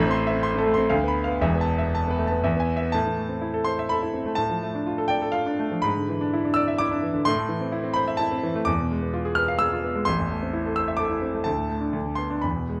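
Stormy and passionate, this brief excerpt of a virtuoso classical piano study in A minor moves in a rubato 3/4 at 114-131 BPM, its solo concert grand sounding clear and up front with deep bass, a smooth vintage character and short sustain across a range from E1 to F6, set in light reverb as the harmony turns through Am, Dm/A and E7/G# before settling on Amadd11/D near 11.9 seconds.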